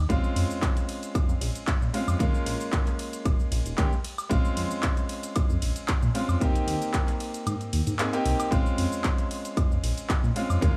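A glossy, chorused sawtooth synth bass opens this sensual, groovy nu-disco excerpt in Bb dorian at 114 BPM with a light swing, joined at once by a brilliant, intimate grand piano with audible action noise and slapback echo, a punchy, overdriven electronic kick up front, and a layered house kit of handclaps, hi-hat, ride, shaker and woodblock in a small room ambience, moving through a rootless Bbm9, Eb7sus4 and Abmaj9, with the kick dropping out from 7.5 to 8.5 seconds.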